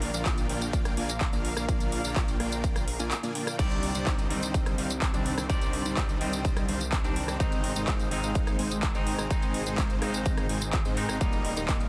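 Euphoric and anthemic, this festival progressive house excerpt drives on a punchy, overdriven electronic kick up front and a big-room dance kit of metallic hi-hats, handclaps, rim click, tambourine and crash, while a huge, compressed supersaw riff pumps with sidechain and dub echo over a thick detuned saw bass in the background, a very quiet, lush pad sustains the chords, and a bright, clean picked electric guitar enters at 3.6 seconds, the whole sealed in a dense, heavily limited modern master.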